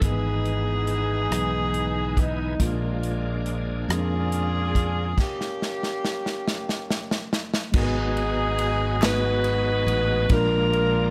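Soulful and solemn, this slow gospel passage moves at 47 BPM in a straight 6/8, set in G# minor and cut from a longer piece. A warm saxophone section carries the melody up front with vibrato and a soft attack, while a fingered electric bass sits equally forward with a direct, warm tone. A mellow tine electric piano accompanies from the background, and a bright tonewheel organ holds sustained chords with a shouting edge, light overdrive, key click, chorus vibrato and a slow rotary speaker. A very quiet French horn section adds tight, lightly vibrant sustained chords until 5.1 seconds, and the airy, polished country drum kit, with its punchy kick and medium-tuned snare, plays a fill and stop from 5.2 to 7.7 seconds as the harmony moves through Emaj7/G#, A#7, A#m6 and G#m7. A crisp, close group handclap appears briefly at 9.0 seconds, all within light reverb.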